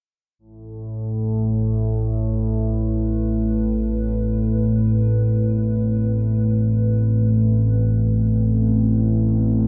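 A detuned, ring-modulated analog pad fades in at 0.4 s on a sustained A minor add nine chord, and at 0.7 s an up-front, nasal analog drone with a pulse-width-modulated sheen settles beneath it in the low register. This ominous dark ambient piece drifts in free time, with both synths carrying chorus and the moody, deep pad sitting further back than the evolving drone. The whole passage, cut from a longer piece, hangs in a vast cathedral reverb.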